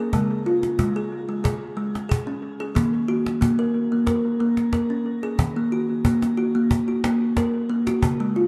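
Plucked, airy kalimba arpeggios open this meditative, hypnotic world fragment, set in analog delay and shimmer reverb and joined at 0.1 s by an up-front, woody cajon struck with hard hands over faint snares; the music shifts into a second section at 5.4 s, all within a wet spring-reverb, echo-heavy mix marked by lossy compression artefacts.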